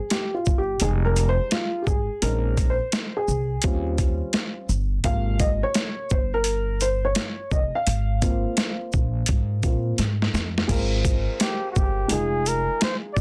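A dark, woody upright piano leads this relaxed jazz-hop excerpt, taking a solo through its first 10.7 seconds over chords that move from Fm9 through Bbm11 and Eb13 to Ab69 in Ab major. Beneath it sits a gritty boom bap drum kit, sampler-style, compressed, pitched down and overdriven, with a thumpy kick, high-tuned snare, hi-hat, shaker and crash cymbal, and it plays a fill just before the new section. An acoustic pizzicato upright bass with gut strings anchors the low end at an unhurried 85 BPM with a swung 16th-note feel. At 11.4 seconds a mellow flugelhorn enters with a smooth-topped jazz solo, shortly before the harmony settles on Fm7. The sound is dry and close, with every part up front in a dense, heavily limited modern master.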